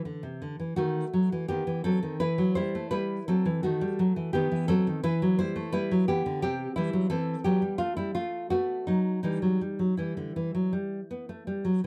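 A dry, close 1970s-style studio sound puts a full-bodied, fingerpicked nylon-string guitar up front, its finger squeaks audible, in this flowing, serene baroque-style classical dance fragment in E minor at 85 BPM in 4/4. The solo guitar plays with rubato and uneven beats, alternating B7/D# and Em before passing through C, F and B7/A to settle on Em at 9.2 seconds.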